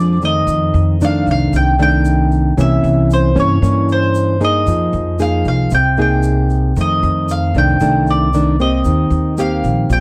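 Bossa nova with a sophisticated, sunny mood, this excerpt from a longer piece sets an up-front picked mandolin melody, round and double-strung with plate reverb, over fingerpicked classical nylon-string guitar and a woody pizzicato upright bass. A very quiet, lush bowed string section sounds only in the first 0.5 seconds, while a grainy, bright egg shaker enters at 0.2 seconds and stays in the background. The chords move through F13, C7b9, Fm11 and back to F13 before arriving on Eb6, all within moderate studio reverb and a cassette tape sound.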